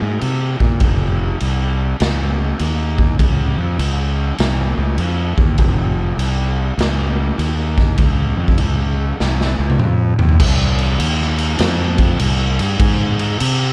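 Ominous and hypnotic, this swung stoner and doom metal excerpt pairs a growly, overdriven fuzz bass with a punchy, gritty garage drum kit of kick, snare, toms and crash cymbal, both up front in a dark, dry production, with a drum fill at 9.2 s leading into a new section at 10.4 s.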